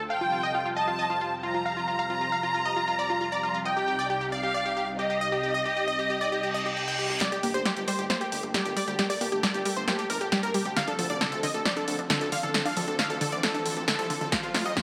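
In a straight 4/4 feel, this driving, euphoric uplifting trance passage opens with a bright, detuned supersaw stab melody pumping over a silky analog string pad, while an expressive, dark violin section with vibrato and portamento carries a second line up front until 7.1 s, all bathed in a huge ambient reverb. A very quiet reverse cymbal and riser lead into the build-up at 7.2 s, where round analog pluck arpeggios with chorus and echo, a punchy analog drum machine fill of hi-hat and snare, and a fat, tube-saturated sawtooth bass in the background join in. A layered electronic kick lands only at 14.3 s, just as the passage cuts off.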